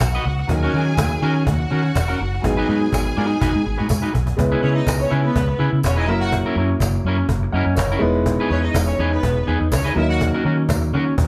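Driving and danceable, this disco excerpt sets a round, punchy, foam-muted fingered bass up front beneath a snappy cajon with snares, a jingly tambourine, a twangy, slightly broken-up electric guitar, a natural concert grand piano and a lush, distant bowed string section, all playing live together in one room, with a cajon fill at 3.9 seconds leading into the second section at 4.4 seconds.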